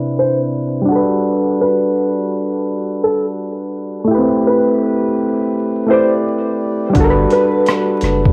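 Soft, warbling electric-piano-like synth keys carry this cosy, nostalgic lo-fi hip hop excerpt in G major at 84 BPM with a swung feel, joined at 0.2 seconds by a dark, woody upright piano melody and moving from Cmaj7 through Gmaj7 and Am7 under a filter sweep, before a gritty, thumpy boom bap kit enters at 6.9 seconds and a thick saturated sub bass arrives at 7.0 seconds, all wrapped in cassette tape coloration, vinyl crackle and a moderate booth ambience.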